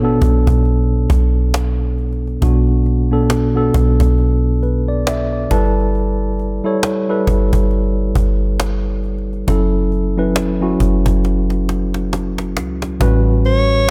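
A mellow tine electric piano and a soft, round 808-style bass open this moody, sensual piece of contemporary R&B, moving slowly at 68 BPM in B minor with a swung sixteenth-note feel and tuning set to A4 = 436 Hz. The clean, direct keys sit up front, moving through Bm7, G69 and F#m7 toward A13, while the deep, dark, sine-like bass gives each note a fast attack that then decays. A close, dry cajon with a woody tone and faint snares joins almost at once, adding a gentle acoustic pulse beneath. The electric piano takes a fill at 4.6 seconds, and the cajon plays its own fill from 11.2 seconds. At 13.5 seconds a close-miked, jazz-style alto saxophone steps forward for a brief solo note, its sound carrying a tender vibrato just as this cut-off passage ends, all in a dry, intimate space with little reverb.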